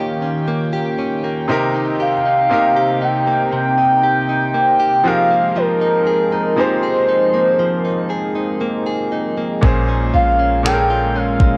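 Contemporary R&B in F minor at a slow 59 BPM, this moody, late-night excerpt from a longer piece carries the light reverb of a home cassette recording. A smooth, gliding portamento lead sits up front with vibrato and chorus, singing the melody between Bb4 and G5 over a bright grand piano whose brilliant, intimate tone comes with audible action noise. A shimmering, retro pulse-width pad holds sustained chords with a slow attack and long release, while a clean, direct-recorded electric guitar adds compressed, picked arpeggios treated with subtle chorus and analog delay. The harmony moves from Eb7 to Cm7 and Fm11, then to Bbm7 at 9.6 seconds, where a trap drum kit enters with finger snaps and a knocking, tape-warm kick alongside a soft, round 808-style bass sitting on a deep Bb1.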